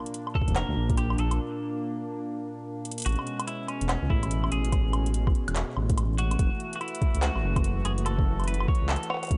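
Wistful and glitchy, this IDM excerpt at 144 BPM swings its 16ths as a warbling, wave-folded analog pad holds chorused chords moving from Bb to Amaj9 and F#m7, while a tape-toned analog drum machine ticks with metallic hats, cowbell, handclaps and woodblock, a clean, compressed semi-hollow guitar carries the melody through lush chorus and digital delay, a detuned, rumbling saw bass sits up front with tube saturation, and a soft, overdriven electronic kick drops out after a brief opening, with a break from 1.4 seconds and a drum fill at 2.9 before the kick returns at 4.1 in a dark, dry mix.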